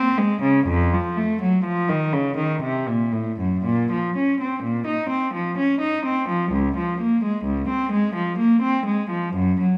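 A lone bowed cello opens at once, its rich, gut-string tone sounding in a grave, flowing baroque-style suite movement in Bb minor. The single player shapes the 3/4 metre with a rubato feel around 62 BPM, giving the line a freely breathing pulse. Played in period style, the instrument has a reedy edge and sits up front, ranging from Db2 up to Eb4. A wet recital hall reverb with a 1.4-second decay surrounds the cello and lends the sound a resonant halo. The opening phrase returns at 3.7 seconds, and this short cut from a longer piece ends at 9.8 seconds.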